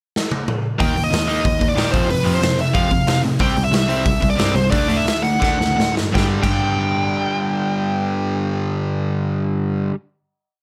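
Energetic and upbeat, this short punk rock piece charges along at 157-186 BPM in a straight 4/4, opening with a drum fill on a raw garage kit that sounds punchy, gritty and up front in a bright stone room before the band enters at 0.8 seconds. A dark, distorted lead guitar plays hook phrases over two overdriven rhythm guitars, one bright and one compressed, both chugging palm-muted eighth notes, while a reedy, gut-string cello bows a driving eighth-note bass line. The tempo slows from 3.4 seconds, a second drum fill arrives at 5.4 seconds, and the piece settles onto a final G5 chord at 6.1 seconds under light reverb.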